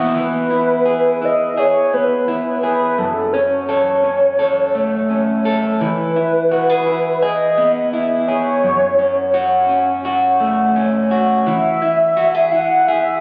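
Blissful and floating, this dream pop passage at 85 BPM in E major opens at 0.0 s with a dark, slightly broken-up electric guitar playing fingered arpeggios up front, touched by subtle chorus and tape echo, before a velvety, smooth sawtooth-and-triangle synth lead with wave-folding, vibrato, chorus and tape echo enters at 0.2 s to sing a sustained melody over chords that sway between E and F#m, all bathed in a lush plate reverb and captured on a phone in a reverberant club with compression, as a fragment cut from a longer piece.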